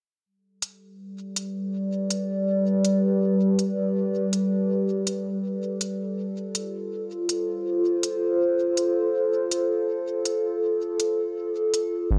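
A lightly swung 4/4 pulse at 81 BPM is set by smooth, produced electronic hi-hats in a small room, opening this spacious, peaceful ambient dub excerpt in G mixolydian. A warbling, nostalgic lo-fi pad, detuned and mellow with slow attack, chorus and phaser, holds sustained chords moving from Gadd9 to F at 6.2 seconds while a filter sweep runs across it. A huge, dark reverb surrounds the sound, and a deep, round sub bass touches G1 only at 12.1 seconds, just as the fragment is cut off.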